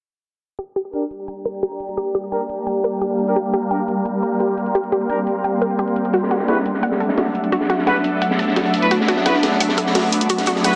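A lush, wave-folded pluck arpeggio and a layered electronic hi-hat open this excerpt of dark, aggressive technical drum and bass at 0.6 seconds, with filter sweeps running across the arpeggio and the delayed, tight brass stabs. An ethereal, chorused pad and a swarming, warbling drone, phased and up front, soon fill out the sustained harmony. At 6.1 seconds a crunchy, saturated breakbeat kit with a high-tuned snare drops in under a dense, heavily limited master with a small-room plate sheen.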